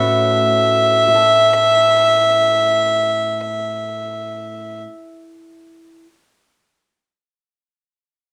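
In free time, this swaggering, rollicking fragment of acoustic country blues puts a single bowed fiddle up front, nasal and woody with light vibrato, carrying the melody until 4.8 seconds, over a dark, boxy fingerpicked steel-string parlour guitar that keeps accompanying to 6.1 seconds, all captured by close, detailed microphones with little reverb.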